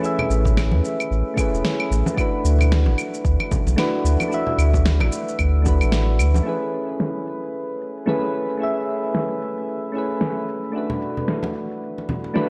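A worn cassette sound colors this sunset chillout excerpt, with warbly pitch drift and a lush hall reverb giving it a hazy, sunny glow. Soft, mellow electric-piano-like synth keys sit up front with chorus and tape echo, their round, gentle tones drifting over a relaxed, swung groove built on Amaj7 and D69 chords. Beneath them, a deep, rounded sine sub bass carries tube saturation, while a layered electronic kick with a tape-softened thump holds the pulse until 5.8 seconds. An electronic shaker, claves and a fat snare, muffled by low-pass filtering and re-recorded in a small room, run throughout. Ringing, medium-tuned acoustic congas join early, fall away with the bass at 6.4 seconds, and return at 10.9 seconds in the sparser second half.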